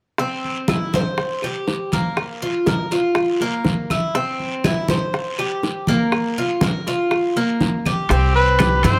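Warm and danceable, this Cuban son and guajira excerpt moves at 121 BPM in straight 4/4 in C major, its harmony rocking between C and Bb. A metallic, double-strung Cuban tres picks up-front arpeggios over tight, high-tuned bongos, bright hard-handed congas set in a distant room, a raspy, saturated guiro and woody claves in the background, captured in a close, dry recording. At 8.1 seconds a punchy trumpet with vibrato takes an up-front solo, joined by a thumpy, dark pizzicato upright bass on gut strings and ringing metal-shell timbales.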